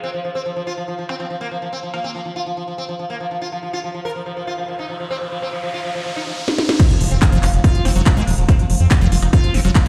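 Psychedelic trance at 142 BPM with a driving, hypnotic feel, this excerpt opens on a buzzing, shimmering sitar melody treated with phaser, delay and sidechain pumping, while a distorted, metallic wobble bass sits in the background as a second line. A riser builds from 5.0 seconds toward an impact, a techno drum kit with a cracking snare, smooth hats, handclaps and crash enters on a fill at 6.5 seconds, and the drop lands at 6.8 seconds with the impact, a heavy, up-front electronic kick and a squelchy, resonant acid bass riff. A deep, round analog bass joins at 7.0 seconds, all heard as if played through a big sound system in a bare stone room.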